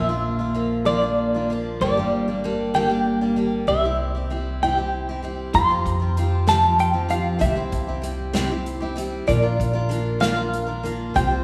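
A dark, clean semi-hollow electric guitar with tremolo carries the melody over a bright, full-bodied picked steel-string acoustic guitar and a woody, thumpy pizzicato upright bass in this pastoral acoustic folk excerpt in a straight 6/8, with a punchy, airy country drum kit of hi-hat, kick and snare joining at 5.5 seconds, all set in the lush reverb of a concert hall.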